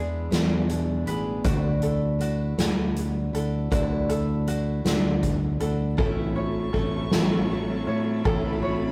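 A soft-mallet drum kit sits up front with dark cymbals and a boomy kick, beside a punchy, up-front fingered electric bass, in this uplifting, hopeful indie folk excerpt at 53 BPM in 6/8 and A major, cut from a longer piece with a building arrangement. A dark, full-bodied picked steel-string acoustic guitar and a light fingerpicked ukulele playing arpeggios carry the accompaniment, while a fingerpicked acoustic guitar with fresh strings appears only until 1.5 s as the chords move from E7 to Dadd9. At 6.0 s the harmony settles on A and a warm, intimate string section enters with soft-attack sul tasto chords, all captured in a rough rehearsal-room recording with light reverb.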